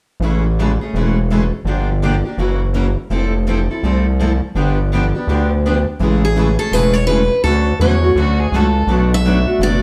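Acoustic string swing in the jazz manouche style, playful and lively, where two bright picked steel-string guitars, one boxy and one full-bodied, pick out the accompaniment over a gritty, saturated synth bass placed up front, until a third guitar with audible finger squeak takes the melody at 6.2 seconds and a biting, vibrato-laden violin adds a brief second line at 8.2 seconds, all set in a wet reverb that places the players further back in the room.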